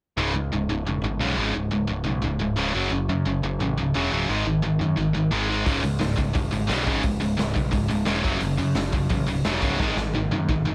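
Two picked, distorted electric guitars, one compressed and one tight and up front, open this raw, aggressive punk rock excerpt alongside a growling, overdriven bass, moving through C#5, F#5 and G#5 to C#m before returning through F#5 and G#5. At 5.7 seconds a gritty, saturated garage drum kit crashes in with a punchy kick, a medium-tuned snare, hi-hat and toms, its rolled-off top ringing in a stone room. A drum fill at 9.8 seconds drives the passage under light reverb.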